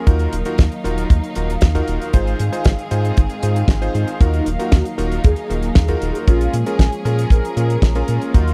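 Bittersweet and danceable, this short italo disco fragment sets a dry, tight kick up front and a fat-snared, damped 70s drum kit with hi-hat under a round, deep analog bass, while a rich studio string section with vintage 12-bit sampler grit holds sustained chords and a bright, clangy electric grand piano jabs stabs through tape echo, and from 4.2 seconds a mellow, detuned synth brass joins to carry the melody through chorus, phaser and tape echo, all in a close, dry 1970s-style studio sound.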